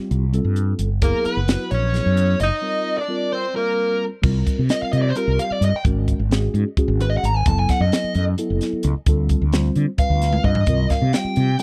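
A dry, close 1970s-style studio sound frames this driving, funky electric jazz fusion excerpt in 7/8 at 261 BPM, cut from a longer piece, with a round fretless bass and a polished drum kit (punchy kick, high-tuned snare, dark cymbals) up front. A mellow tine electric piano with phaser comps through mostly suspended chords from G9sus4 to C7sus4, while a smooth, overdriven lead guitar and a bright, present tenor saxophone enter at 1.0 s, the saxophone playing a second line until 4.0 s. After a break, the guitar takes a solo from 4.2 s to the end, marked by a drum fill at 10.3 s.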